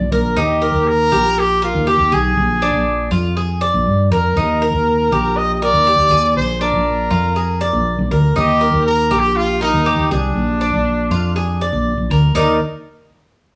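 A bright, metallic Cuban tres picks arpeggios on its doubled strings over a growly, round fretless electric bass, and from 0.4 seconds a roomy trumpet with vibrato sings the solo melody in this relaxed Cuban son and guajira cut from a longer piece, moving at 120 BPM in Eb major between Eb and Bb7 chords with the live band sharing one large studio room.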